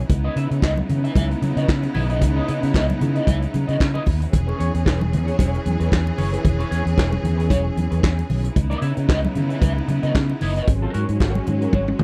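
A dry, close recording with a 1970s studio character opens this short disco cut from a longer piece, driving and glamorous at 113 BPM in 4/4 with a light sixteenth-note swing in C# minor. Up front, a vintage drum kit with a punchy kick, medium-tuned snare, hi-hat, toms and handclaps carries the groove alongside a round, amped fingered electric bass. A twangy electric guitar at the edge of break-up plays accompaniment through a wah, while a lush, bowed studio string section holds smooth, focused chords with vibrato. Very quiet congas with a thick-skinned, hard-handed tone sit close in the mix. The harmony moves from C#m9 to E6 and back, landing on G#9sus4 at 10.7 seconds before a drum fill at 11.7 seconds.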